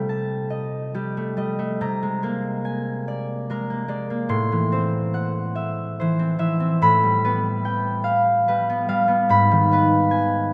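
Rubato in a slow 6/8 at 48 BPM, this dreamy, peaceful classical excerpt features a solo concert harp, fingerpicked, ringing and up front, ranging from Ab2 to C6 through the chords Cm6, Bb9/C, Am6, G9/A and Abm6, all bathed in a wet cathedral reverb with a long 5.4-second decay.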